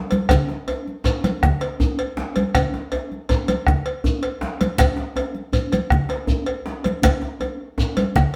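A festive, driving 12/8 pulse at 107 BPM, counted in dotted quarters with a straight feel, opens on a drum fill in this short excerpt from a longer West African traditional drum ensemble piece. The round, close bombo sits most prominently alongside bright, damped congas struck with hard hands, a deep djembe with metal rattles played with soft hands, a metallic cowbell and a grainy, mellow shekere. The ensemble plays live together in one stone room whose wet reverb gives the performance a lively, resonant space.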